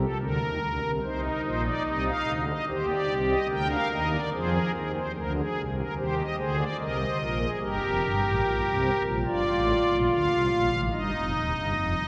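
A long, wet church reverb surrounds a solo pipe organ drawn on its string and celeste stops, whose soft, shimmering tone sits up front in a romantic voicing that spans from deep bass notes to a high treble. This brief cut from a longer baroque-style three-part fugue in steady 4/4 feels contemplative yet driving as it moves through dark minor harmonies before opening onto an Ebadd9 chord at 10.9 seconds.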